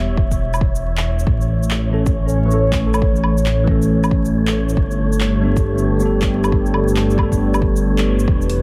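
Future garage at 137 BPM with a 64% swing on the sixteenths, this nocturnal, ghostly fragment of a longer piece moves from Em to A to Gadd9 as a bell-like tine electric piano with phaser and analog delay sits over a moody analog pad with chorus and a rumbling, saturated detuned saw bass up front, all three pumping to the sidechain, while an airy, breathy wind-like noise texture hovers high, a deep electronic kick enters at 0.2 seconds, a deep house kit adds handclaps, shaker, woodblock and dusky hi-hats, a band accent lands at 7.9 seconds, and vinyl crackle colours an echo-heavy mix.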